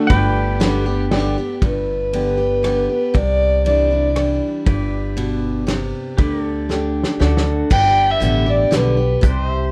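A dark, woody fiddle carries this down-home, heartfelt honky-tonk and classic country waltz in G major at 118 BPM, taking a bowed solo with light vibrato from 1.6 s while a twangy electric guitar with plate reverb plays a brief melody at the very start. A bright, full-bodied acoustic guitar and a pizzicato upright bass sit up front with a punchy small-room drum kit that adds a fill at 6.7 s, as a clean pedal steel guitar with volume swells and a distant, very quiet violin section hold sustained chords over a progression moving through Cadd9 and Dsus4 back to G. Light reverb and a worn, warbling old-tape pitch drift give this heartfelt cut from a longer piece a faded cassette character.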